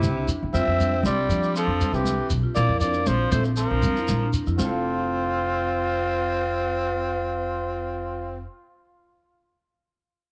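Highlife guitar band music in F major at 118 BPM, carefree and sunny, cut from a longer piece and caught on cassette in a small room with light reverb. An up-front breathy trumpet with light vibrato and scooped notes carries the melody over a raspy, gritty tenor saxophone second line, while a woody marimba plays arpeggios through analog delay, a clean, dark electric guitar accompanies in the background, and a thumpy pizzicato upright bass on gut strings sits up front. Bright, thin-skinned congas and a grainy shekere drive the percussion until 4.8 seconds, and the chords move from C through Fsus2 and Bbsus2 before settling on F at 4.6 seconds.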